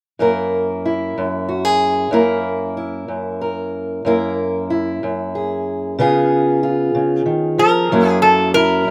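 A metal-body resonator slide guitar, metallic and nasal and played with fingerpicks, steps up front at 7.6 seconds for a brief melody between A4 and A#4. It sits over a dark, boxy parlour-style steel-string acoustic guitar, fingerpicked with a slapback echo, that carries the accompaniment from 0.2 seconds through chords of F#7 and C#7. This swaggering, laid-back acoustic country blues excerpt moves in a slow 12/8 at 62 BPM in F# mixolydian, with a dry outdoor sound and little reverb.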